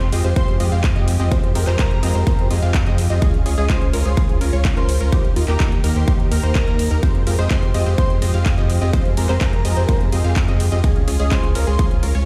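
A straight 4/4 pulse at 126 BPM drives this emotional, anthemic festival progressive house passage in F minor, cut from a longer piece, with a punchy, overdriven electronic kick up front from 0.4 seconds and a layered big-room drum kit of handclaps, metallic hi-hats and ride cymbal underneath. A deep, thick saturated sub bass carries the low end, while a detuned sawtooth supersaw stab plays a riff with a cassette-tape colour, delay and sidechain pumping. Behind them, a lush unison pluck spins arpeggios through a filter sweep with subtle chorus and delay, and a dark, woody string section holds bowed chords with vibrato and a smooth top. An airy, dreamy lead, soft yet bright, sings a melody in the background from 0.4 to 11.8 seconds, coloured by chorus, delay and a moving notch. The harmony moves through Fmadd9, Db and Eb before returning to Fmadd9 and Db, and the dry mix sounds as if played on a big system in a bare stone room.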